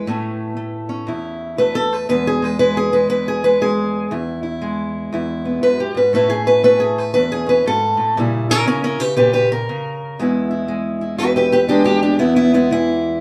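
A swung 4/4 feel drives this gritty, swaggering acoustic country blues excerpt, where a lone fingerpicked steel-string guitar with a parlour-style tone sits up front, moving from A to E, back to A, through an A#dim7 at 8.2 seconds and on to E, all captured live in a single room with a moderate large-studio reverb and some lossy compression artefacts.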